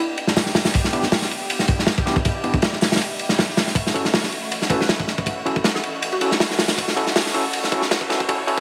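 A raw, dark drum and bass excerpt with a jungle feel at 159 BPM, built as a short build-up over Em7 moving to F#m7/E. It features crunchy, saturated breakbeat drums with a punchy kick and dark cymbals up front, distant bowed strings holding lush sustained chords under a filter sweep, and barky, overdriven tine electric piano stabs with medium tremolo and dub echo, also swept. A very quiet, woody mallet-like synth pluck plays brief melodic fragments, a faint riser enters at 6.0 seconds, and the whole sits in a small echo-chamber space dusted with vinyl crackle.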